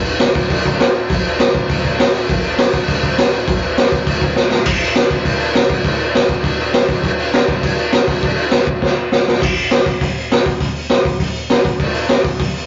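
A straight 4/4 beat at 202 BPM drives this short punk excerpt with energetic, upbeat urgency. A raw garage drum kit carries the whole piece, its punchy kick, medium-tuned snare, hi-hat and crash cymbal sitting up front in a gritty, mid-forward sound. The kit moves through three sections, and drum fills mark the turns at 4.4 seconds and again from 8.8 to 9.4 seconds before the final stretch. The drums sound acoustic and saturated in a small room, touched by light reverb. The whole recording has the rough feel of a rehearsal-room cassette tape, with warm saturation and a rolled-off top that keeps the sound dark.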